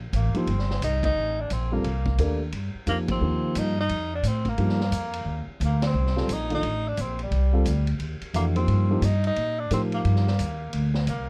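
This dry, dark-toned recording has a warm production and very little reverb, giving it a close, unadorned sound. It is a searching, hypnotic modal jazz excerpt in C dorian, swinging in 4/4 at 176 BPM over a single Cm9 chord. The upright bass sits up front, its plucked steel strings woody and growly. Behind it, a vintage drum kit in a studio room uses hi-hat, ride, snare and kick, with dark cymbals, a high-tuned snare, a punchy kick and a rolled-off top. The tenor saxophone carries the melody as a distant, roomy solo with light vibrato and scooped notes, while a mellow upright piano adds accompaniment with long sustain. The band hits accents together at 1.0, 3.0 and 5.8 seconds.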